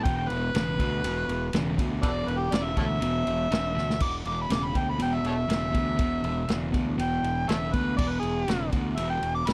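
A dry, close 1970s-style studio sound frames this swaggering, driving blues rock and southern rock power-trio excerpt at 121 BPM in a straight 4/4, tuned to A4 = 438 Hz over an E5 chord. An amplified, gritty harmonica sits up front and solos throughout in a jazz style, with vibrato, tongue slaps and scooped notes, while a bright, crunchy, double-tracked guitar picks a low riff bathed in spring reverb. A growly fuzz bass played with the fingers and a small-room vintage kit with a punchy kick, medium-tuned snare, ride and crash cymbals and a rolled-off top drive underneath, with a drum fill at 3.8 seconds.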